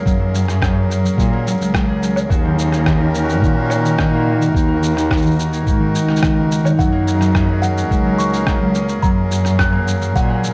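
Hopeful and delicate, this folktronica excerpt rests on a single Gbadd9 chord, with a reedy accordion holding sustained chords beneath ringing, fingerpicked concert harp arpeggios touched with tape echo. A dark, bowed cello carries the bass with vibrato and portamento, while a thumpy, muffled, pitched-down electronic kick and a sampler-style shaker, rim click and woodblock sit in studio reverb. At 6.8 seconds a tinkling, slightly out-of-tune music box enters with a second line through delay, all wrapped in a dark, warm production with vinyl crackle and small room ambience.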